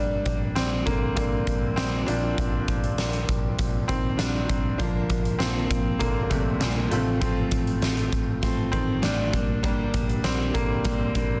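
A straight 4/4 pulse at 99 BPM carries this short piano-driven pop excerpt, and its mood is hopeful and anthemic. A bright concert grand piano plays from the first second, brilliant and slightly worn with a deep low end, sitting up front as it moves through Gm/Bb, Bb, F/A and back to Gm/Bb. The huge arena drum kit arrives at 0.3 seconds with hi-hat, a boomy kick and a fat snare, also placed up front with a hall-like size. Underneath, a vintage muted electric bass stays in the background, dark, round and foam-muted with an amped edge. At 4.8 seconds a picked steel-string acoustic guitar joins with a riff, its dreadnought body sounding woody and full, with the warm tone of old strings. Light reverb and small room ambience frame the parts, and the master is dense and heavily limited in a modern style.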